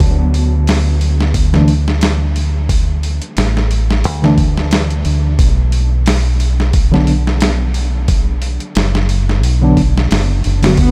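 A lightly reverberant mix opens this smoky, hypnotic trip hop excerpt at 89 BPM in 4/4, with a gentle swing on the 16ths. A dark, round and punchy fingered dub bass and a compressed, overdriven sampler-style soul kit, with a thumpy kick, a medium-tuned snare, hi-hat and small-room ambience, sit up front, while a worn, slightly out-of-tune tine electric piano enters at 1.5 seconds through tremolo, a low-pass filter and tape echo, moving from a D5 chord to B minor at 5.4 seconds. Muted, veiled bowed strings with vibrato and 12-bit sampler grit arrive only at 10.8 seconds, just as the cut ends.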